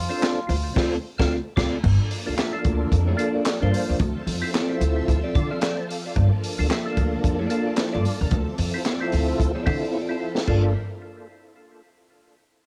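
Funk at 111 BPM in 4/4, this driving, funky cut from a longer piece swings its sixteenths in G dorian, moving between Dm7 and a rootless Gm9. A growling, raspy jazz trumpet opens with a brief, distant note that is over by 0.8 s, and a band accent follows. Up front, a woody pizzicato upright bass on steel strings and a dry compact cocktail kit with punchy kick, high-tuned snare, dark cymbals, handclaps and crash anchor the groove. A round, percussive tonewheel organ plays stabs through chorus vibrato, a slow rotary speaker and tape echo, and it takes a fill midway. A clean, fingered electric guitar with phaser adds accompaniment, and from 1.8 s a shimmering vintage string machine holds soft-attack violin chords, with a drum fill near 9.9 s. The whole thing sits in a small room on a homemade cassette recording.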